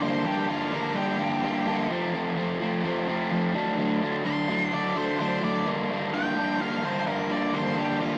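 A straight 4/4 pulse at 128 BPM drives this gritty, smoky rock excerpt in G minor, where a bright, double-tracked overdriven guitar riff sits up front over Gm, F and D chords while a dark, fuzzed octave lead guitar carries the melody, all captured in a rough, saturated rehearsal-room recording with a stony reverb.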